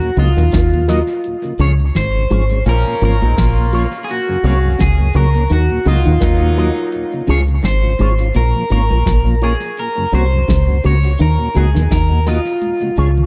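An echo-heavy mix with light reverb opens this hypnotic, laid-back slice of roots reggae, cut from a longer piece and set in a gently swung 4/4. A dark, round fingered electric bass sits up front, punchy and foam-muted, while a booming analog drum machine supplies a deep kick, crisp snare, metallic hats and toms through analog delay, closing with a fill from 12.6 seconds. A slightly broken-up electric guitar carries the melody with a picked, twangy tone soaked in dub echo, and a clean, compressed guitar plays a low fingered riff under an ensemble chorus. Further back, a mellow tonewheel organ with key click and a slow rotary speaker holds the accompaniment alongside a scooped, envelope-filtered guitar touched by analog chorus and dub echo. A clear horn section with a smooth top and light vibrato adds a second line between 2.7 and 7.2 seconds, its phrases trailing off into dub echo over a cycling Ebm, Db, Bbm, Gb progression.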